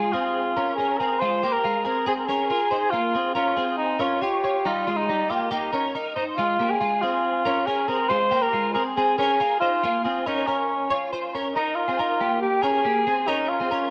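A mellow cor anglais sings an up-front, vibrato-tinged melody with a soft attack and a vintage, classical touch over a clean, compressed twelve-string electric guitar picking arpeggios through tube saturation and ensemble chorus, giving this bright, youthful indie pop fragment at 139 BPM in straight 4/4 a shimmering lift as it cycles through Db, Fm, Bbm and Eb before moving into a new section at 11.5 s, all set in light studio reverb with a rough home-demo feel.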